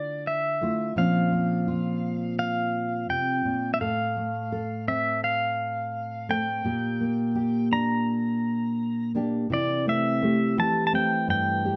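A steady, straight 4/4 pulse at 84 BPM carries this tender, intimate acoustic folk-pop ballad in F major, heard as a short cut from a longer piece. Up front, a fingerpicked nylon-string guitar lays down a full-bodied, deep classical accompaniment with the crisp ring of fresh strings. Over it, a bright, twangy electric pedal steel guitar sings the melody, its clean, compressed tone shaped by fingerpicks, slide and volume swells and set in a plate reverb. The harmony moves through Dmadd9, Bbmadd9, F/A and Gm/Bb before settling on C6 at 9.5 seconds, where a felt-muted upright piano joins with soft, mellow arpeggios, its thick felt and audible action noise adding a close, hushed texture. Light reverb and a dark, warm production wrap the parts in an intimate glow.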